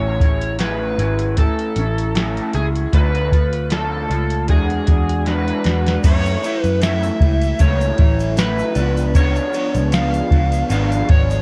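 A lo-fi bedroom-pop excerpt at 77 BPM with a gentle 16th-note swing opens on an overdriven slide guitar melody with lush chorus and tape echo over a dark, slightly broken-up electric guitar with warbly pitch drift, a round foam-muted picked bass and, from 0.2 s, a gritty vintage rhythm box with a deep kick and crisp snare, whose drum fill at 5.3 s leads at 6.0 s into a second section where a very quiet phased organ-string pad and a grainy egg shaker join, all wrapped in sunny, dreamy cassette haze as the chords move from Amaj7 through Dm and E9 to F#m7 and C#7b9.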